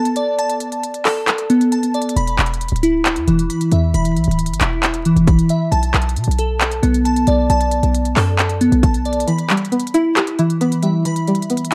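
Vinyl crackle and light reverb frame this brooding, dark excerpt of half-time trap hip hop in E minor at 135 BPM, where glassy, mellow digital keys play arpeggios through chorus and tape echo over chords moving from Bm7 to E5 and Em. Up front, a trap kit brings handclaps, crisp hi-hats and a hard-clipped kick, while a short, punchy 808-style sine bass with a noise layer arrives at 2.2 seconds and stops at 9.3 seconds. At 9.3 seconds, a twangy, string-like resonator pluck with a sawtooth edge and a moving notch filter takes over as accompaniment while the kick drops out.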